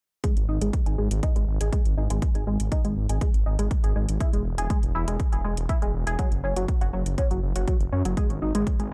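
A tight, wave-folded synth arpeggio with chorus, phaser, analog delay and sidechain pumping opens this driving, dramatic melodic techno excerpt at 0.2 seconds, alongside a punchy, tape-warm electronic kick up front and quieter metallic hi-hats. A menacing, detuned sawtooth bass enters at 0.4 seconds, sustained and pumping as its filter swells. Light digital reverb gives the echo-heavy mix a spacious sheen.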